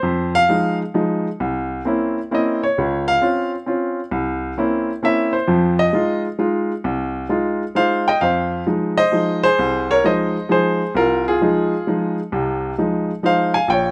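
Jazz in F minor with a late-night, swinging mood, this waltz-time excerpt at 132 BPM features a solo baby grand piano, natural, intimate and up front with audible action noise, moving through Fm7, C7b9 and Dbmaj7 before shifting into a new section at 8.2 seconds, all heard in a live room with light reverb.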